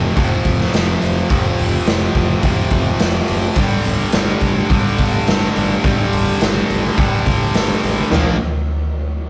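A straight 4/4 classic rock groove at 106 BPM drives this sunny, confident excerpt, with a raw garage drum kit up front: a punchy kick, a medium-tuned snare, hi-hat and toms, saturated and gritty with a rolled-off top in a pumping, bright stone room. A tight, double-tracked distorted electric guitar plays a bright picked riff over F5, moving to G5 at 3.6 seconds and Bb5 at 8.1 seconds, while a growling fingered electric bass with overdrive sits in the background. The whole rough rehearsal-room recording carries tube saturation and a moderate stone room reverb.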